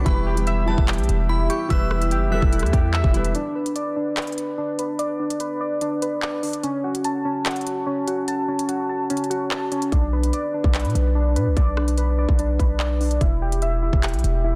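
Drill hip hop at 146 BPM in a half-time feel and B minor, dark and tense, opens with a crystalline synth bell, a felt-muted upright piano with audible action noise and punchy 808 bass over warbly lo-fi synth keys and a drum kit of hard-clipped kick, crisp hats, handclaps and rim clicks. The bell fades at 2.5 s, then from 3.3 s a break strips away the piano and bass while a filter sweep begins moving through the keys, continuing after the heavy 808 returns at 9.9 s, all in a dry, dense, heavily limited mix cut from a longer piece.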